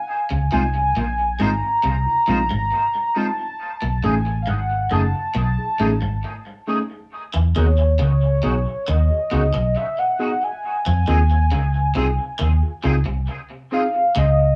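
A velvety synth lead sits up front in this smooth, tender reggae excerpt, its detuned sawtooth and triangle voices carrying a sustained melody shaded by vibrato, chorus and tape echo. Beneath it, a dark, foam-muted fingered electric bass gives a round, punchy, amped low end that stands close to the listener. Two twangy electric guitars fill the middle: one picks a low riff with tube saturation, ensemble chorus and dub echo, while a brighter, compressed guitar adds higher stabs through the same chorus and echo. A worn, slightly out-of-tune tine electric piano plays clean, direct accompaniment with a subtle chorus. The harmony moves through Dbmaj9, Cb13 and Emaj9 before returning to Dbmaj9 at 10.6 seconds. The mix has the rough feel of a home demo, with a small room's ambience and short reverb around the parts.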